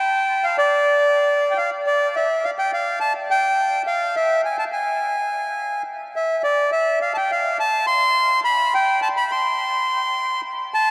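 A reedy, bright bandoneon plays alone, close-miked and up front, through this tense, sultry fragment of a tango in A minor, moving in a rubato 4/4 around 105 BPM with the tuning set to A4 = 436 Hz, its full voice ringing into a vast, echoing space with a huge 8.1-second reverb tail across the 10.9 seconds.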